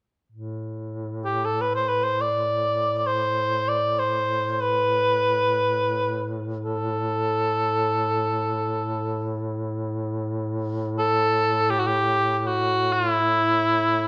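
In free time, this longing, solemn Caucasian lament, cut from a longer piece, opens at 0.3 seconds with a mellow duduk holding a low drone on A2, distant and roomy with vibrato and scooped notes, before a warm cor anglais enters up front at 1.2 seconds with a classical-style melody from E4 to D5, its light vibrato, soft attack and smooth top set in a moderate recital hall reverb.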